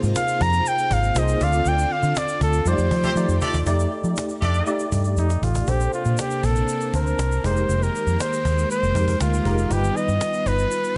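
Polished 1980s jazz-funk pop with a breezy, upbeat mood, this short excerpt is carried by a warm, up-front flugelhorn melody with vibrato, while a clear, distant horn section adds a second line with octave doubling between 3.0 and 4.7 seconds. Underneath, a worn, slightly out-of-tune tine electric piano and a shimmering string machine of violins, both with ensemble chorus, supply chords over a dark, round, punchy muted bass, a snappy, dry cajon and a grainy egg shaker. A band accent and short drum fills mark the changes, and the whole sits in a small room ambience.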